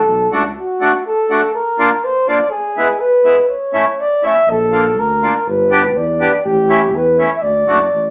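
Bouncy and jolly, this short alpine folk piece cut from a longer work moves in a straight two-beat feel, with a mellow flugelhorn carrying the melody throughout, its light vibrato and classical phrasing sounding distant and roomy yet up front. A reedy, full accordion in dry tuning supplies airy accompaniment from 0.3 seconds, while a soft-attacked tuba in classical style anchors the bass, dropping out after 0.5 seconds and returning at 4.5 seconds. The studio reverb is wet, and the harmony wanders through colourful shifts such as Bb and E before settling through A7 back home to D.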